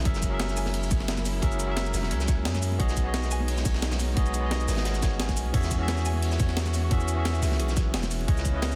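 Liquid drum and bass at 175 BPM in 4/4, soulful and rolling, with a light 16th-note swing, heard as a brief cut from a longer piece. A barky, clean tine electric piano carries the accompaniment through a delay, moving over F#9, B69 and E69 chords, while a rich, bowed string section holds very quiet sustained chords with vibrato and a ringing, fingerpicked concert harp adds faint arpeggios. Underneath, a deep, sine-like 808-style bass sits up front with a fast attack and long decaying notes, run through tube saturation. The drums enter at 0.1 seconds as a stack: a tight, tape-warm electronic kick, a compressed, gritty sampler-style breakbeat kit with a high-tuned snare, cabasa, hi-hat, ride and crash, and a crunchy, saturated acoustic break in the background with dark cymbals and a rolled-off, high-passed top. Congas played with hard hands join at 0.7 seconds, bright but tucked well behind the kit. 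The mix is dry and dense, with a heavily limited modern master.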